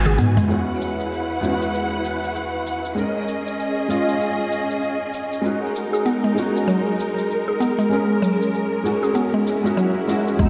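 Organic downtempo with a hypnotic, earthy mood and a lightly swung 4/4 feel: a felt-muted upright piano, mellow and intimate with audible action noise, plays accompaniment under chorus and tape echo, while a veiled, con sordino string section holds lush sustained chords, both breathing with sidechain pumping in a dreamy mix soaked in hall reverb. Gritty, sampler-style electronic toms and shaker run throughout, congas and a smooth sawtooth synth bass sound only in the opening half-second drum fill, and a woody, warbling FM pluck plays arpeggios that return at 5.9 s. An electronic swell enters in the background from 9.5 s, and at 10.4 s the bass comes back alongside a deep, overdriven electronic kick just as this excerpt is cut from the longer piece.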